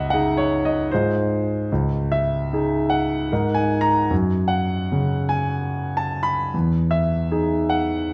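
Nocturnal and wistful, this short excerpt of impressionist classical solo piano drifts at 75 BPM in a rubato 3/4 in C# dorian, tuned to A4 = 441 Hz, with an up-front, clear concert grand whose deep bass and long sustain ring naturally through a wet recital hall reverb as its chords move from C#sus2 through C#madd9 and F#5 to a closing Emaj7 at 6.5 seconds.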